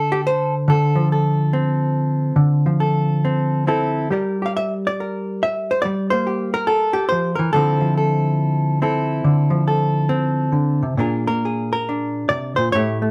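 A clean, dark hollow-body electric guitar, fingered and compressed, sits up front alone in this smoky, late-night solo jazz piece in D minor, swinging at 140 BPM with a rubato feel and tuned slightly below standard pitch. Across this 13.1-second section cut from a longer piece, it moves through Dm7, Gmadd9, Dm9 and Bb7, ranging from A2 to F5. Moderate studio ambience surrounds the guitar, which was captured live in one room.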